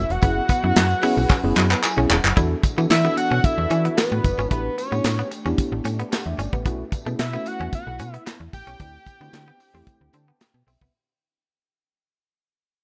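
A fat, nasal analog lead sings the melody over snappy, metallic FM slap bass, silky phased string-machine chords and a bright, twangy direct guitar riff as this danceable, slick early-eighties boogie funk excerpt opens at 112 BPM, with a tight, up-front funk kit of kick, snare, hi-hat and handclaps, a worn, slightly out-of-tune phased tine electric piano and a jingly tambourine in the background joining almost at once, a drum and piano fill arriving at 1.3 seconds, and a fade-out beginning at 2.4 seconds over the small room's ambience.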